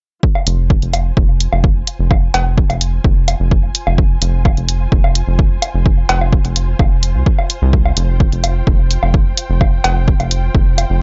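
A punchy, overdriven electronic kick drives this hypnotic, quirky minimal techno cut at 128 BPM in F minor, joined by an up-front overdriven hi-hat, a rubbery, hollow square bass with tube saturation and sidechain pumping, tape-toned woodblock and cowbell through analog delay, and a veiled, muted string section that fades in from 0.2 seconds, all within a dry, gritty digital ambience.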